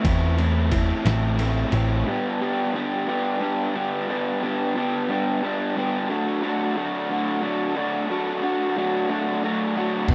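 A dry, close 1970s-style studio sound with light reverb frames this moody, cool indie rock excerpt in 6/8 at 60 BPM, where a raw, double-tracked, overdriven garage guitar riff moves from Am to G to D up front, joined at the start by a dark, round, punchy hollow-body short-scale picked electric bass and a muffled, pitched-down, sampler-style drum kit with thumpy kick, snare, crash and ride, both of which drop out near 2.0 seconds and return at 10.1 seconds, leaving the guitar alone through the middle.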